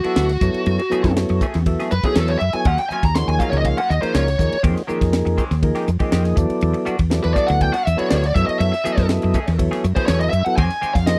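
A dry, close studio sound in a 1970s style, touched with light reverb, frames this intense, slick stretch of electric jazz fusion, cut from a longer piece. A bluesy, overdriven lead guitar solos up front through the whole 11.2 seconds, its dark, picked tone thickened by distortion and tape echo. Beneath it, a mellow tonewheel organ with audible key click turns through a slow rotary speaker, while a semi-hollow electric guitar adds bright, compressed stabs colored by analog chorus. A woody fretless bass sits round and punchy in the mix, and a tight funk drum kit, airy and polished with a high-tuned snare, drives a straight 4/4 on hi-hat, kick, snare and ride. The harmony glides through lush minor ninth chords such as Gbm9, Ebm9, Fm9 and Em9.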